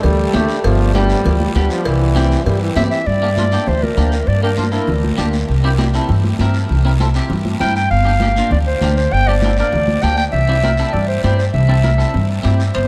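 A dreamy mix soaked in huge ambient reverb frames this driving, passionate cumbia, a short cut from a longer piece moving at a brisk 198 BPM in straight 4/4 and sitting in G dorian. Up front, a woody, growly pizzicato upright bass with a dark steel-string tone anchors the groove throughout. Around it sit ringing, high-tuned congas played with soft hands in the background, a raspy, close guiro, and very quiet metal-shell cowbell and timbales. A clean, twangy, picked electric guitar adds compressed, scooped accompaniment through lush chorus. A bright, punchy trombone with light vibrato and a smooth top opens with a delayed solo line before bowing out at 3.1 seconds. The warm, close-miked clarinet takes over the melody at 2.8 seconds in a classical style, carried on its own delay as the harmony settles between Gm and C.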